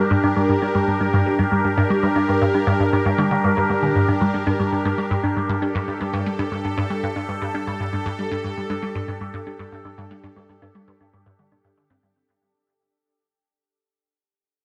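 Ambient, sequencer-driven space music at 117 BPM in 4/4 with a straight feel, this hypnotic, expansive passage is cut from a longer piece and sits on a G minor chord throughout, tuned to A4 = 444 Hz. Up front, an evolving wavetable pad holds bright, morphing sustained chords between D4 and Bb4, its detuned unison voices coloured by phaser and built-in reverb. Also prominent is a juicy, squelchy resonant blip pluck playing a low riff from G2 to G3, with a moving notch, a touch of chorus, phaser and tape echo. In the background, a round, tine-like thumb-piano-like synth pluck spins gentle FM arpeggios from D3 to D4 through chorus and tape echo. A wet plate reverb with a 2.4-second decay surrounds the mix, and a fade-out begins at 4.0 seconds and runs to the close at 12.2 seconds.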